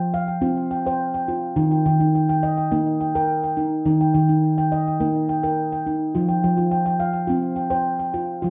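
A solo handpan opens this short excerpt of meditative world music, its nitrided steel ringing out up front at a steady 105 BPM in straight 4/4. The tone is dark and smooth, yet each sharp finger stroke gives the notes a clear edge. Its range spans Eb3 to G5, and a tape echo trails behind the playing. A wet studio reverb with a short decay surrounds the instrument and lends it a gentle, spacious glow. The harmony rests on F5, moves to Eb at 1.6 seconds, and returns to F5 at 6.1 seconds, keeping the calm, contemplative mood through the full 8.5 seconds.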